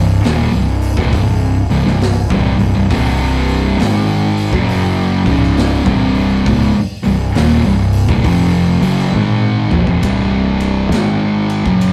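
A slow 68 BPM pulse in 4/4 with a 65% swing on the eighth notes drives this ominous stoner and doom metal excerpt, rooted in C minor on a single Cm chord. Two thick fuzz guitars carry the riff between C2 and Ab3, one warm and up front, the other darker, both picked and heavily distorted. Beneath them a fingered electric bass growls through overdrive in the low register from C1 to Bb1, its tone dark, round and punchy. A big acoustic rock kit joins at 0.2 seconds with a punchy kick, a medium-tuned snare, bright cymbals, hi-hat, ride and toms, and a drum fill from 9.1 seconds leads into a new section at 10.0 seconds. The sound is that of a rough rehearsal room, with tube saturation and a light reverb giving the cut a raw, heavy weight.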